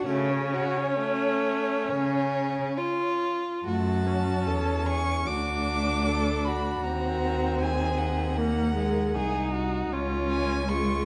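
A focused, vibrato-laden first violin carries the melody above this slow, rubato movement for string quartet in F# minor, melancholic and solemn at 63-78 BPM. The second violin sings a smooth, even line up front, while the close, expressive viola fills in the accompaniment with soft attacks and portamento, and the cello, also up front, anchors the bass with its own sliding portamento. Cut from a longer piece, the passage moves from F#m through D and G#7/D# before arriving on C# at 9.9 s, all set in the wet reverb of a recital hall.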